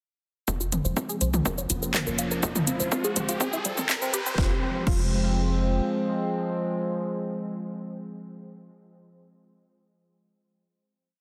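A four-on-the-floor kick, punchy and overdriven, drives this short, dark and cinematic melodic techno piece at 123 BPM in F harmonic minor, joined by a house kit with cracking snare, metallic hats, claps, shaker, toms and crash, a tight dotted-rhythm sawtooth bass, a detuned 16-step arpeggio under a filter sweep with chorus and digital delay, and a riser from 1.6 s during the build over Fm, Bbm/F and C/F, while an evolving, resonant pad with slow attack sustains chords from the start and holds the final Fm chord in a huge ambient reverb until 8.7 s.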